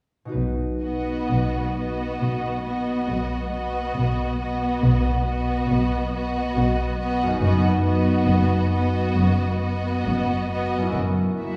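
Bright, ringing harp arpeggios and rich, expressive cellos in the background open this tender, slow romantic orchestral excerpt at 68 BPM in B major, joined by clear, smooth double basses and, from 0.8 s, a warm violin melody with vibrato and portamento, a focused, distant second violin line and dark, up-front violas, the bowed strings moving with rubato in a wet concert hall heard from further back as the harmony travels from B to F#7 at 11.0 s.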